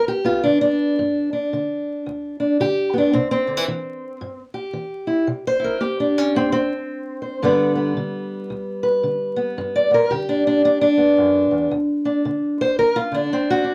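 A swung 4/4 pulse at 112 BPM drives this short passage of acoustic country blues, with the eighth notes carrying a relaxed, loping lilt that gives the music a swaggering yet soulful character. A single fingerpicked steel-string acoustic guitar carries the whole piece from 0.0 to 13.7 s, its parlour-style body lending a dark, boxy tone that sits up front in the mix. The playing spans from low D2 bass notes up to D5, moving in G major from G to C at 3.1 s, back to G at 7.4 s, before the harmony falls away at 11.7 s. Tuned a touch under standard pitch at A4 = 438 Hz, the guitar is captured by close, detailed microphones in a moderate studio ambience. A layer of vinyl crackle lends the recording an aged, lived-in patina, and the passage is cut from a longer piece.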